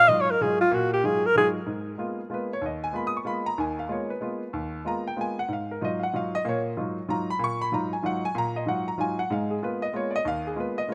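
Swung eighth notes in a brisk 3/4 at 189 BPM drive this jazz passage in G# dorian, cut from a longer piece, with a searching, hypnotic mood. A warm alto saxophone takes the melody up front for the opening 1.5 seconds, its jazz-style solo colored by vibrato, scooped notes and a smooth top. A concert grand piano supplies accompaniment up front through the full 10.9 seconds, its clear, worn and natural tone reaching into deep bass with short sustain. The harmony alternates between D#madd9/G# and G#m69, shifting at 1.7, 5.5 and 9.3 seconds. The rough home demo mix carries light reverb and small room ambience.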